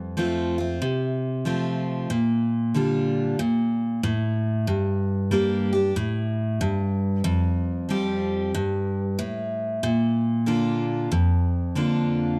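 Country in an easygoing, down-home mood, this short solo piece for picked steel-string acoustic guitar is cut from a longer work and moves with a relaxed swing in four. The lone guitar plays across the full 12.4 seconds, ranging from a low F2 up to G4. Its jumbo body gives a full-bodied tone, while fresh strings make it bright, and finger squeak adds a human touch. The chords drift from F through Bb6, Gm and Fadd9 before settling on Bb. Captured dry and up close in the manner of a 1970s studio, with only a small room's reverb around it, the guitar sits intimately in front of the listener.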